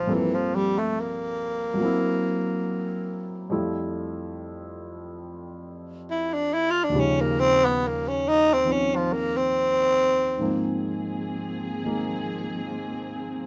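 Jazz ballad at a relaxed 70 BPM with a swung feel, intimate and wistful, in a short fragment from a longer piece. A breathy, raspy tenor saxophone carries the melody up front with scooped notes and a gritty growl until 10.7 seconds, over a natural-sounding baby grand piano accompanying throughout, as chords move from Gm11 through Fmaj9 and Eb9. At 10.4 seconds a dark, woody string section enters with lush bowed chords and vibrato on Ab69, all set in light reverb.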